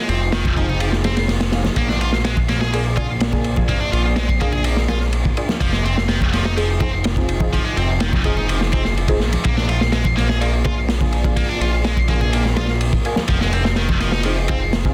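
A crunchy breakbeat kit drives this gritty, funky breaks cut in a straight 4/4, its punchy kick, medium-tuned snare and dark ride cymbal sitting up front with a saturated, rolled-off top. Congas with hard hands and a thick skin join at 0.5 seconds, close and dry but tucked in the background. Underneath, a fat analog bass with a detuned sawtooth edge, tube saturation and a filter sweep holds the low end, while a heavy high-gain guitar cuts through with a bright, distorted, picked riff colored by delay. A filtered dub chord stab, muted and evolving with phaser, analog chorus and a moving notch, enters at 0.6 seconds. Behind it all, a deep, moody ambient pad sustains chords with chorus, its own reverb and sidechain pumping, as the harmony moves between Fm7 and Bb7 across this dense, heavily limited excerpt.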